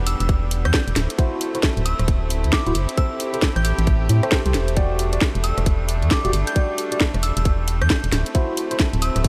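Bouncy, moody two-step UK garage cut from a longer piece, where a tight, up-front electronic kick and an overdriven garage kit of hi-hat, rim click and cracking snare swing beneath a hollow, dark organ-like FM bass, while a reedy studio violin section with gut-string tone holds pumping chords through Em7, D9, Am7 and Em9, a clean tine electric piano adds phased, echoing stabs from 1.2 seconds, and a glassy, crystalline synth bell sits in the background with chorus and tape echo.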